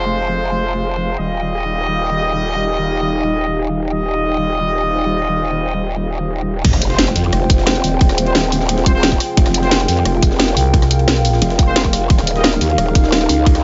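Dark, futuristic drum and bass at 176 BPM in F minor, cut from a longer piece, opens on a detuned, saturated growl bass and bright brass ensemble stabs under a low-pass filter and dub echo, with a deep ambient pad pumping in the background and a wave-folded analog pad joining it at 1.9 seconds, before the drop at 6.6 seconds brings a background impact, a tight kick, a cracking-snare kit, a very quiet gritty breakbeat layer, and a brief thick FM bass growl at 10.6 seconds.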